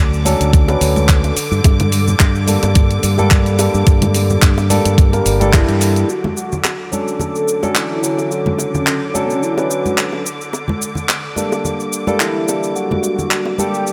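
Groovy and sunny, this nu-disco clip swings lightly in 4/4, with a barky, lightly overdriven tine electric piano accompanying up front through dub echo while a clear, bowed studio string section holds sidechain-pumped chords moving between Dmaj7 and Gmadd9. A punchy fingered bass with an envelope filter and a thumpy, overdriven electronic kick drive the opening until about 6.0 seconds, under a layered house kit of cabasa, handclaps and hi-hat plus close, dry bongos and congas. With a band accent at 5.5 seconds, a thick, detuned sawtooth unison lead with cassette tape character and tape echo enters to carry the melody, and the strings soon receive a filter sweep.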